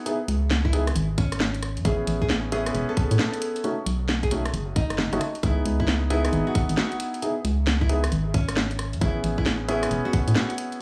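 Late-night and soulful, this short excerpt of two-step UK garage moves at 134 BPM in C# minor, swung on the sixteenths, as a mellow, dark baby grand piano plays stabs through dub echo over C#5, Amaj9, B9 and C#m9 chords from 0.0 seconds. A layered garage kit with a cracking snare, rim click and warm hats sits up front beside a tight electronic kick, while a hollow, organ-like FM bass with a percussive, fast attack, a decaying tone and tube saturation enters at 0.3 seconds. A fingerpicked nylon-string guitar carries a warm classical melody through its own dub echo from 0.7 seconds, all within a light studio reverb.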